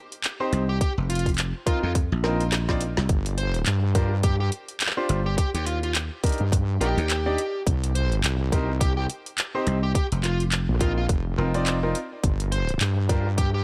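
Playful and funky, this glitch hop excerpt struts at 105 BPM with a swung sixteenth-note feel, built on a tight, up-front electronic kick and a layered kit of woody snare, metallic hi-hats, handclaps and rim clicks, with a drum fill at 2.2 seconds. A growly, foam-muted thumbed slap bass sits alongside a heavy, saturated wobble bass with chorus that enters at 3.1 seconds. Above them, brilliant grand piano stabs carry 12-bit sampler grit, sidechain pumping and digital delay, while a dark, overdriven picked lead guitar with its own delay carries the melody over Cm, F7sus4, G7(no3) and Ebmaj7 in a digital ambience.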